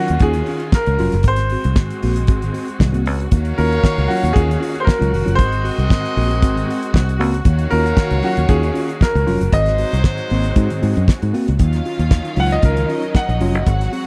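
Driving and glamorous, this disco clip from a longer piece moves at 116 BPM in a straight 4/4, circling between Ebm9 and Ab9 in Eb dorian. A dry, up-front 70s drum kit with a fat snare and tight kick anchors the groove alongside a punchy, foam-muted fingered bass. A worn, slightly out-of-tune tine electric piano adds mellow accompaniment, while a distant, lush symphonic string section holds sustained chords behind it. The bright, brilliant grand piano carries the melody with a slapback echo, and a present pop-style horn section punches in with stabs from 3.3 s. At 11.6 s the piano takes a solo as a smooth, vibrato-rich violin section arrives with a second line, all within a close, dry 1970s-style studio sound.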